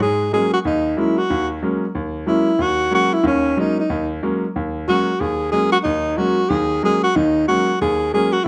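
Searching and spiritual, this brief 8.5-second jazz excerpt swings at 185 BPM in 4/4 over a G#9sus4 chord, with a breathy, whispered alto saxophone carrying the melody up front, close-miked with vibrato, subtone and scooped notes through a plate reverb, while a clear, vintage-toned grand piano with short sustain accompanies in a moderate studio room.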